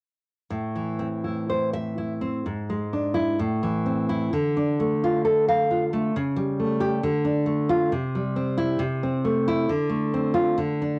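A romantic solo classical guitar excerpt, melancholic and passionate, with a rubato feel that lets the phrases breathe from 0.5 to 11.0 seconds. The fingerpicked nylon-string guitar sits up front with a deep, warm classical tone, and finger squeaks show on the strings as the harmony moves through Am, E7/G#, Dm, A7/C#, C and Dm7. A moderate studio reverb surrounds the playing, which was captured as a home recording on cassette.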